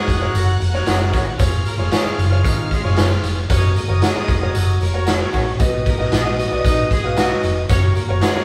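Horns, a lush bowed violin section and an intimate grand piano open this uplifting, joyful excerpt of 1960s-style soul, with the horns and vibrato-rich strings sitting in the background behind the piano's deep bass and long sustain. A punchy, up-front garage drum kit and a round, foam-muted fingered electric bass drive the straight groove, while a jingly tambourine adds shimmer. A slightly broken-up electric guitar through a small old amp plays picked stabs with spring reverb from 0.9 seconds, and very quiet, high-tuned congas join at 3.5 seconds, all within the small-room ambience of a band playing live together.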